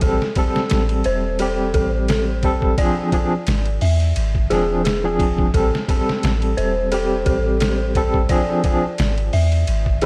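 A barky tine electric piano, played through a combo amp with tremolo and tape echo, carries the chords of this hypnotic, cinematic trip hop excerpt in A minor at 87 BPM, with a 55% swing on the 16ths. Above it, a dark detuned FM synth bell plays eerie, inharmonic arpeggios, its mellow, full-bodied tone thickened by chorus and tape echo. Underneath sits a soft 808-style bass, deep and round, with a fast attack that decays. A pitched-down, compressed sampler-style drum kit, re-recorded in a small room, supplies a thumpy kick, a medium-tuned snare, hi-hat and ride. Across the 10.1 s cut, the harmony alternates between Am7 and E7b9b13 chords. The whole recording has a dry, gritty hardware character, with vinyl crackle and digital ambience.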